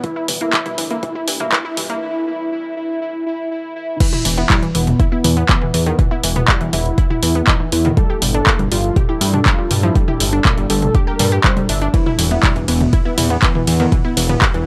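A barely audible swarming drone, a bold, detuned sawtooth unison lead with vibrato, 12-bit sampler grit and tape echo, and punchy, warbling plucked arpeggios that pump under sidechain all open this melancholic, driving melodic techno cut in E minor at 121 BPM. A deep, tape-warm kick and an overdriven analog drum machine with handclaps, hi-hat, ride, crash and toms sit up front over a fat sawtooth bass, while a very quiet, moody chorused pad sustains chords as the harmony moves between G5 and E5. The drone stops at 2.0 seconds for a short break inside a filter-swept build-up, and the drop lands at 4.0 seconds, all in a dry, gritty hardware sound.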